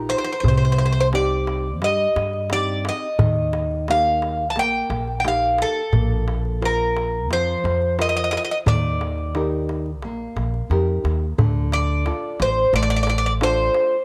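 A bright, metallic bouzouki with doubled and partly octave-doubled strings picks the melody up front from the opening moment, over warm fingerpicked classical nylon-string guitar with audible finger squeak and a woody pizzicato upright bass, setting a brooding, bittersweet Greek folk mood. A clay-shell darbuka struck with hard hands enters at 0.1 s, and the home cassette recording sits in moderate spring reverb. This cut from a longer piece moves into a new section at 11.4 s before ending at 14.0 s.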